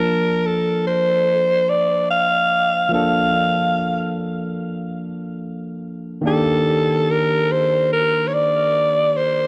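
Reggae at 72 BPM with a gently swung 16th-note feel, this tender, smooth fragment of a longer piece sits in Bb major, moving from Bbmaj7 to Ebmaj7 at 6.2 seconds. A breathy, raspy alto saxophone carries the pop-style solo melody up front with vibrato and tape echo, while a barky tine electric piano, lightly overdriven through a combo amp and also touched by tape echo, supplies the accompaniment. A moderate echo chamber reverb and a dark, warm production give the whole an enveloping glow.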